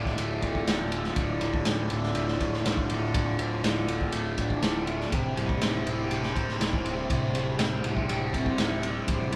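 A bright, double-tracked fuzz guitar riff with phaser leads this hypnotic, mysterious psychedelic rock passage cut from a longer piece, backed by a gritty, saturated breakbeat kit with tight kick, medium-tuned snare and dark ride cymbal, a round, overdriven picked bass on a low D, and a reedy harmonium with a shimmering, buzzing tanpura drone in the background, the band playing live in one room as the chords move from Dm to C/D at 5.1 seconds.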